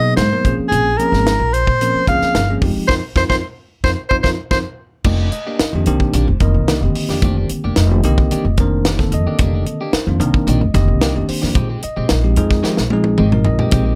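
A clear soprano saxophone leads this slick, funky stretch of electric jazz fusion up front with vibrato, scooped notes and a slapback echo, carrying the melody until 4.6 seconds. A bell-like tine electric piano, a woody, thumpy pizzicato upright bass and a tight funk drum kit with a high-tuned snare drive the groove, marked by a band accent and drum fills. From 5.1 seconds a compressed electric guitar adds quiet, picked stabs with subtle chorus over suspended chords, the whole piece sitting in light reverb.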